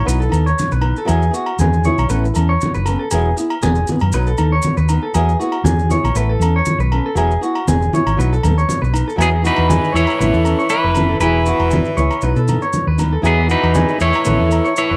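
Warm and danceable, this highlife guitar band groove moves at 119 BPM in 4/4 with a light swing on the sixteenths, cycling through B, Eadd9 and Aadd9 chords in E major. A dark, round hollow-body bass sits up front, while a bright, compressed clean electric guitar picks twangy arpeggios through slapback echo and a boxy, fingerpicked flamenco guitar plays accompaniment with audible finger squeak. Low-tuned congas with a thick-skinned tone sound distant in a large room, joined by ringing agogo bells and grainy, mellow maracas. At 9.2 seconds a fingered electric guitar at the edge of break-up takes the melody up front, coloured by spring reverb and slapback echo, as a raspy, gritty tenor saxophone with vibrato adds a forceful second line in the background. The dry, close sound recalls a 1970s studio session, and the piece is cut from a longer performance.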